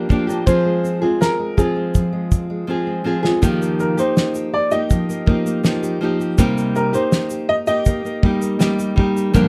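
A woody, boxy upright piano carries the melody in this carefree, heartfelt acoustic pop excerpt, its short-sustained notes sitting up front over a small, fingerpicked nylon-string guitar and a dreadnought steel-string guitar playing arpeggios in the background. A cloth-damped, thuddy drum kit with a fat snare, tight kick, shaker and rolled-off top adds a fill from 2.7 seconds as the harmony moves from Fm to Ebadd9 and later Cm7. A clean, reedy electric piano slips in at 9.3 seconds, all heard through close, detailed microphones in a dry, intimate sound.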